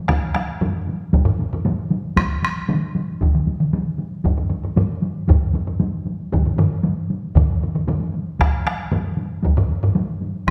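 A wet recital-hall reverb with a 1.5-second decay surrounds this Japanese traditional taiko drum ensemble, recorded in a church or concert hall and cut from a longer piece. The mood is ceremonial and powerful, at 116 BPM in a straight 4/4. Three taiko ensemble parts begin together at 0.1 seconds. One is struck with heavy sticks and set up front in a small-room sound, another is played with hard sticks and placed close, dry and up front, and a third uses heavy sticks with a close, dry character; one of these ensemble parts stops at 9.9 seconds. A solo taiko part joins at 2.2 seconds, also with heavy sticks and a small-room sound, sitting up front in the mix. The acoustic drums carry the whole passage as one continuous section that runs to 10.5 seconds.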